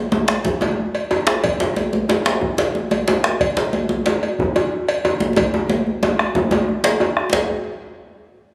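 West African traditional drum ensemble music, earthy and powerful, rolls at 122 BPM in a straight 12/8 as two djembes, one tight, cracking and saturated and the other deep and up front, are joined by a dark, dry bombo and a metallic cowbell, with a drum fill from 5.4 to 7.3 seconds, all heard through a wet, reverberant room on a phone-recorded excerpt cut from a longer piece.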